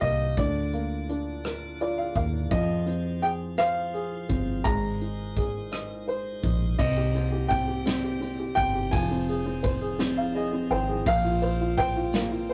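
A rough rehearsal-room recording with tube saturation and a moderate booth ambience frames this aching, dramatic pop ballad in a straight six-eight metre, cut from a longer piece. A clear, polished baby grand piano carries the melody high in its range, while a woody, boxy upright piano with short sustain sits up front as accompaniment and adds fills at 1.4 s and 10.0 s. A tonewheel organ holds piping, scooped chords beneath, turning slowly through a rotary speaker and sitting lowest in the mix. A dark, round, foam-muted fingered electric bass anchors the low end alongside a soft brush drum kit with a punchy kick, a medium-tuned snare, rim clicks, hi-hat, ride and crash. The harmony moves from Bb/D through Fm and Abadd9, then shifts at 6.8 s into a second section of Cm7, Fm7 and Bbsus2 that leaves the phrase hanging open.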